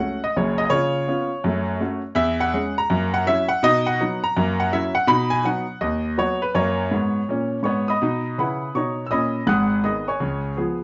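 Swung eighths drive this playful, exuberant stride jazz fragment, a 10.8-second cut from a longer piece in which a solo grand piano with a clear, worn, natural tone sits up front and spans deep bass to high treble, heard in a moderate studio room with a softened top end as its opening minor chords give way to brighter major harmony.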